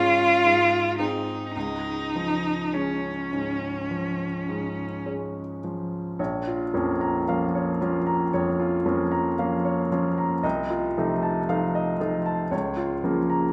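Bathed in a 1.7-second recital hall reverb, this serene, lyrical romantic duo excerpt drifts in rubato at 51-59 BPM, with a smooth, bowed cello singing its vibrato melody until 5.1 s, while an intimate baby grand piano, its action noise audible and its notes ringing with long sustain, carries the accompaniment on alone to 13.5 s as the harmony turns from Db major to Bb minor at 6.2 s.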